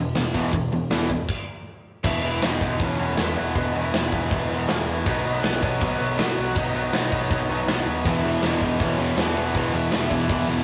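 Punk rock with a rebellious, energetic drive, cut from a longer piece: a cranked stack guitar sits up front playing a riff, joined at first by a crunchy overdriven guitar, over a bright, punchy, growling picked bass and a big-room acoustic drum kit with a tight kick and a medium-tuned snare. After a brief stop at 1.3 seconds, a lead guitar through a small cranked amp enters in the background at 2.0 seconds, and the crunchy guitar returns at 8.1 seconds. The rough rehearsal-room recording carries warm saturation and moderate studio reverb.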